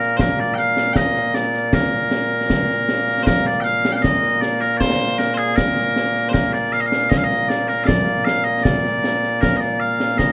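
Proud and stirring, this short cut from a longer piece of Scottish traditional pipe music moves in a straight two-beat metre. The bagpipes carry the melody from start to finish, a continuous, piercing solo line placed up front in the mix, ranging from Bb2 up to G5. Beneath them, a concert snare drum and concert bass drum play throughout, with an acoustic, live-room character, dark cymbals and a close, forward presence, though they sit a little lower than the pipes. The same opening strain is heard twice, the second statement beginning at 3.3 seconds and running to the end at 10.3 seconds. A light reverb surrounds the performance, and the top end is rolled off above about 10.3 kHz.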